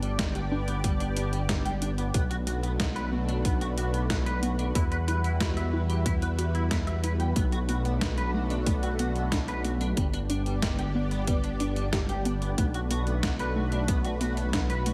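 A deep, rumbling detuned saw bass sits up front in this nocturnal, cinematic synthwave excerpt in B minor at 92 BPM, moving through G, Bm7 and Emadd9 chords. A silky analog string pad with ensemble chorus holds sustained chords, a twangy, clean electric guitar plays a riff through chorus and digital delay, and a detuned 8-bit drum machine supplies hi-hat and snare bathed in gated reverb. From 0.2 seconds, a very quiet, warbling lo-fi pluck adds arpeggios and a punchy electronic kick drum enters.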